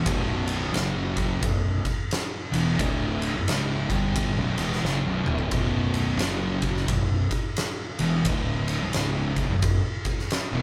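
An oversized, low-tuned acoustic drum kit sits up front in this ominous, hypnotic stretch of stoner and doom metal, its boomy kick, fat snare, toms and dark ride cymbal sounding saturated and gritty in a big, pumping room. A drum fill breaks in from 4.8 to 5.5 seconds before the groove settles back. Two thick fuzz guitars pick out a heavy riff in the background, their tone dark and distorted as they circle between B5, F#5 and B minor. Beneath them, a fingered electric bass growls low, its overdriven, tube-saturated sound coming through direct and amped with a warm fuzz. The band plays live in one room with moderate studio ambience, and the swung 4/4 feel gives the slow, crushing lurch a rolling sway in this short cut from a longer piece.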